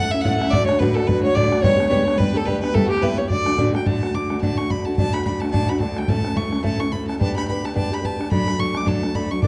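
A clear, focused fiddle carries the melody up front in this bright, lively Celtic reel, played by a single player with light vibrato and a close presence. The passage is cut from a longer piece and moves at 216 BPM in 4/4 with swung eighths, in D major. Behind it, a darker, woody second fiddle adds a distant line with portamento until 3.7 seconds, while a picked steel-string acoustic guitar sits up front with an auditorium-like body. A bowed cello holds a D drone in the background, and a damped, tight bodhran enters at 0.3 seconds, set back in a large room. The chords move through A, D, G and E minor, and the production is dark and warm under moderate studio reverb.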